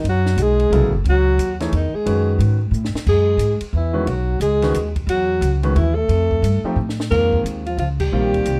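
Intense and hypnotic, this modal jazz waltz swings in 3/4 as a subtoned alto saxophone carries the melody up front with vibrato and scooped notes, while a breathy, mellow trombone sings a second line beneath it. A woody, thumpy pizzicato upright bass on gut strings sits prominently alongside a compact cocktail drum kit with dark cymbals, a high-tuned snare and a tight kick, which drops in brief fills, and a grand piano joins at 0.7 seconds with intimate action noise and long sustain. The dark production carries light reverb, and a band accent lands at 7.9 seconds before this fragment of a longer piece cuts off.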